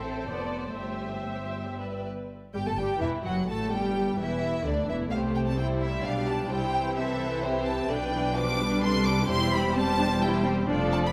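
A focused, close violin section carries the melody above a smooth, more distant second violin line, lush violas, intense cellos in the background and even double basses in this cheerful, graceful excerpt from a quick classical-period movement for string orchestra in C major at 128 BPM in 3/4 with a rubato feel, bathed in a concert-hall reverb lasting 2.1 seconds.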